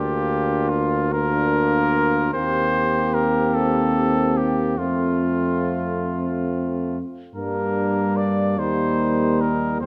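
A clear cornet sings the lyrical melody up front from the opening moment. A warm, distant flugelhorn traces a second line in the background, while a brilliant, vintage-toned solo trombone and a mellow, soft-attacked trombone section fill in the accompaniment. A roomy tuba with light vibrato anchors the bass in this serene, hymn-like classical passage for brass band, moving at a slow 48 BPM in 6/8 with uneven, rubato beats and bathed in the lush reverb of a recital hall.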